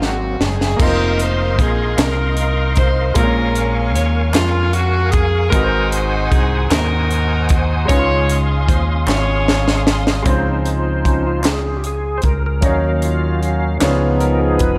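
An edgy, tight saxophone section sings the melody with subtle vibrato until 10.2 s, while a reedy tonewheel organ, lightly overdriven with key click, chorus vibrato and a fast rotary speaker, holds sustained chords before taking a solo at 10.3 s, all over brilliant grand piano, a round, dark fingered electric bass, a crisp fusion drum kit with bright cymbals and a high-tuned snare, and very quiet, hollow handclaps joining at 2.0 s, giving this slow gospel piece a hopeful, soulful glow under a touch of reverb.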